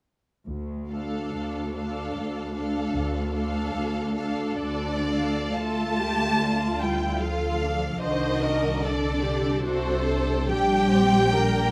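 Classical music for string orchestra, this slow romantic movement in 3/4 unfolds with a yearning, solemn character and a freely bending rubato pulse. Cellos and double basses open the passage at 0.5 seconds, the cellos sitting up front with a focused, smooth-topped tone while the basses give an even, smooth foundation beneath them. At 0.9 seconds the upper strings join: a lush first violin section carries the melody up front with expressive vibrato, a second violin section adds a focused but distant line, and dark violas fill the middle with sliding portamento. The harmony rests on D minor before moving to a D7 over C at 8.0 seconds and a G minor over B-flat near the close, deepening the sense of longing within the second section, which begins at 5.6 seconds. A moderate scoring-stage reverb gives the ensemble a sense of space, and the passage is cut from a longer piece.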